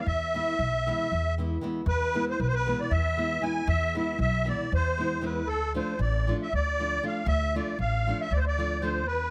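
In a straight 7/8 at 234 eighth-note beats per minute, this fiery yet bittersweet Balkan folk excerpt in E phrygian dominant, tuned to A4 = 436 Hz, features a reedy, shimmering musette accordion carrying the melody up front, a woody pizzicato upright bass, and a small, fingerpicked nylon-string guitar accompanying more quietly, all captured with close, detailed microphones and light reverb, as a new section begins at 1.9 s and the harmony shifts from E to Dm at 5.5 s.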